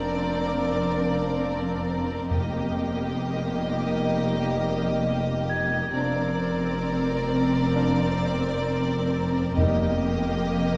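At a slow 66 BPM in straight 4/4, this ominous, eerie suspense cue, cut from a longer film score, moves between Bbadd9 and Eb chords over a constant F in the bass. The violins carry the melody around D5 to Eb5 with focused, smooth-topped vibrato, while a second violin line and the violas fill the middle with an even, warm bowed texture. Cellos and double basses hold a low F beneath, the basses adding woody depth, and a French horn section sustains chords in the background until 9.9 s. A delicate, bell-like celesta rings through the upper register on soft felt hammers, lending a sweet, mellow glow against the darkness. Timpani struck with hard mallets sound a dry, articulate F at 2.3 s and again at 9.6 s, and the ensemble sits back in a scoring-stage reverb that gives it a distant, spacious presence.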